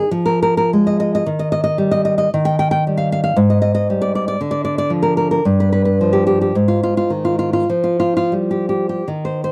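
Melancholic and wistful, this short romantic passage for solo classical guitar, cut from a longer piece, moves in a loose, rubato 2/4 with the instrument tuned slightly below standard pitch. The fingerpicked nylon-string guitar sits bright and up front, ranging from G2 to G5 as it drifts through Fmadd11, Eb, Dm and G7 before settling on Fsus2 near 7.7 seconds. A dry, close sound in the manner of a 1970s studio, touched by small room reverb, keeps the playing intimate.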